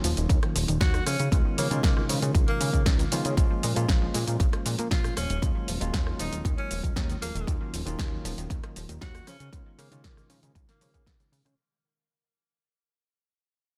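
A sleek, sensual nu-disco excerpt cut from a longer piece, riding a drop that begins fading out at 3.4 seconds under a dense, heavily limited master. A punchy electronic kick sits up front from 0.3 seconds alongside a house kit of bright hi-hats, rim click, shaker and snare in small-room ambience, while a glossy, chorused synth bass and a barky tine electric piano through a combo amp both pump with sidechain, the piano trailing tape echo. A very quiet, detuned unison pluck warbles through arpeggios, and from 0.8 seconds a breathy, whispered tenor saxophone carries the solo melody with vibrato and dub echo.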